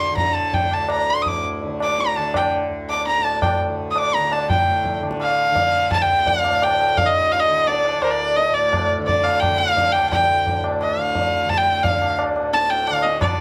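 A clear, nasal violin sings an intense, up-front melody in raga bhairavi on D, with light vibrato and a plate-reverb sheen, over a softly plucked, buzzing tanpura drone, and a low-tuned, distant tabla with short ring joins at 0.2 seconds in this introspective, meditative Hindustani classical passage in 4/4 at 170 BPM, which gradually speeds up and moves into a new section at 4.5 seconds within a moderate studio room.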